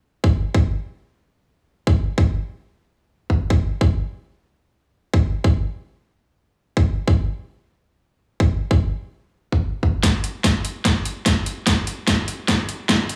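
Dubstep at 147 BPM in a half-time 4/4 feel, this short cut from a longer piece sounds chaotic and heavy. A punchy, layered electronic kick drum opens at 0.2 seconds and carries the first section, sitting up front with a tape-warm character and a touch of studio reverb. At 10.0 seconds a dubstep drum kit joins for a build-up and drum fill, bringing a huge snare and metallic hi-hats that sit just behind the kick in level. Both drum parts sound produced, their studio reverb adding space around the hits. A high-pass filtered digital ambience with a small-room quality hangs over the whole recording, keeping the sound tight and close until the fill cuts off at 13.2 seconds.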